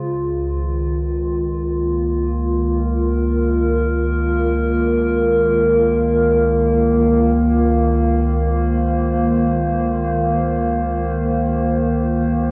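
Ambient and weightless in free time, this short excerpt holds a single warbly, tape-like pad alone from 0.0 to 12.5 s, its dark, nostalgic square-and-triangle tone swelling in on a slow attack and sustaining an Ebsus2/Db chord from Db2 up to C5, up front with chorus and built-in reverb, all steeped in a huge, wet ambient space with a 7.8 s decay and the worn, lo-fi pitch drift of old cassette tape.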